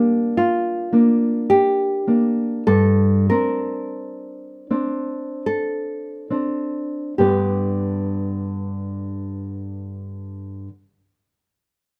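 Romantic guitar duo in a melancholic, elegiac mood, with a rubato 3/4 pulse between 33 and 55 BPM that slows through the first 7.2 seconds: one up-front, fingerpicked nylon-string guitar carries a dark classical melody over a second nylon-string guitar whose small, thumb-plucked accompaniment with fresh strings moves from G minor through D5/G to a closing G major. Light reverb surrounds both parts until they stop at 10.7 seconds in this passage cut from a longer piece, tuned to A4 = 441 Hz.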